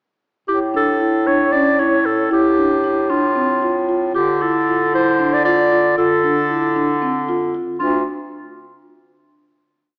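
Contemporary chamber music in 7/8, this short, complete piece moves at 230 BPM counted in eighths with a straight feel, sitting in D minor with a restless, pensive mood. A warm clarinet carries the melody up front, shaping a motif-based line in arching phrases between F4 and D5 in a classical style. Beneath it, a marimba with soft mallets plays an arpeggiated ostinato in a narrow band from C4 to F4, its woody, round tone mellow and airy. A bright bass clarinet holds sustained bass notes from D2 to D3, slightly lower in level, with a vintage character. The harmony passes from A through Fadd9/A to Dm, and all three instruments play from 0.5 to 8.0 seconds before a final chord rings out until 9.6 seconds. A moderate concert hall reverb surrounds the ensemble, though the overall sound has a small-speaker quality.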